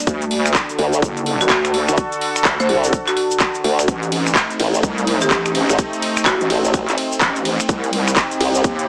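A bright, chorused pad with a filter swell opens this swaggering, bouncy bass house excerpt at 126 BPM with swung 16ths, joined at 0.1 s by a heavy, saturated square-and-sine wobble bass, a tight, tape-warm electronic kick, a big-room kit of finger snaps, handclaps, metallic hi-hats and ride cymbal, and a grainy tube shaker in the background, then at 0.8 s by an overdriven, formant-filtered wobble bass and at 1.4 s by a woody, dry hard-mallet marimba melody with dub echo, while the pad and both basses pump with sidechain compression over D, Adim and Cm chords in a moderate room with a small-speaker sound.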